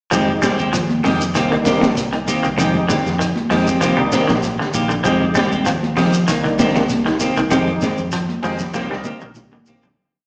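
A hypnotic, defiant afrobeat groove in F dorian at 97 BPM opens at once with a crunchy, saturated breakbeat kit with a punchy kick and high-tuned snare, a round, foam-muted fingered bass riff, hard-handed congas, a grainy shekere, a twangy picked guitar ostinato and a bright, up-front guitar strumming upper chord shapes, both guitars in lush chorus, while a fat, lightly overdriven tonewheel organ with key click and slow rotary speaker plays rootless syncopated stabs until 9.3 seconds, all cycling between Fm9 and Cm7 and heard as a live gig through a venue PA with recital hall reverb, before a fade-out from 7.5 seconds and a drum fill from 8.7 seconds close the piece.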